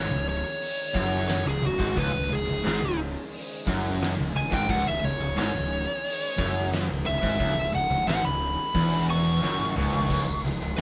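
Recorded as a band playing live in one room with moderate reverb, this ominous, heavy stoner and doom metal clip at 89 BPM in C# minor sits on a single C#m chord, with a dark, up-front fuzz lead guitar soloing from the start over a bright, double-tracked overdriven guitar riff and a pair of very quiet, dark fuzz guitars also riffing in the same low register. A growly, punchy fingered bass with overdrive and fuzz rumbles in the background, while an oversized, low-tuned drum kit enters at 0.6 s with a fat snare, punchy kick and crash in a pumping stone room, adding a fill at 9.4 s. Underneath, a very quiet, calm organ-like drone of detuned sine tones with slow attack and chorus holds sustained chords from 0.5 s.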